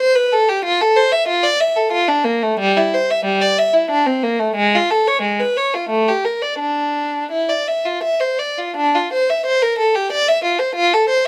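Moving in a flexible, rubato triple metre, this solemn, grave baroque-style suite movement features a single unaccompanied violin, rich, smooth and even with vibrato, bowed up front through close, detailed microphones and light reverb, ranging from G3 to E5 across a brief fragment of a longer piece that shifts into a new section at 8.8 seconds.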